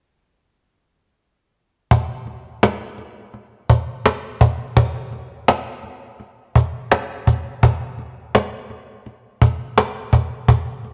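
A lone cajon enters at 1.9 seconds, its woody tone and faint snare rattle setting a smoky, mournful blues mood. It is the only instrument in this short passage, which is cut from a longer piece and runs until 10.9 seconds. The playing sits in 4/4 with a light swing on the sixteenths, giving the groove a relaxed, unhurried sway. The cajon is recorded close and dry and placed up front, so its acoustic body feels near and immediate. Around it, a moderate echo-chamber reverb lends the space a lingering, melancholy air.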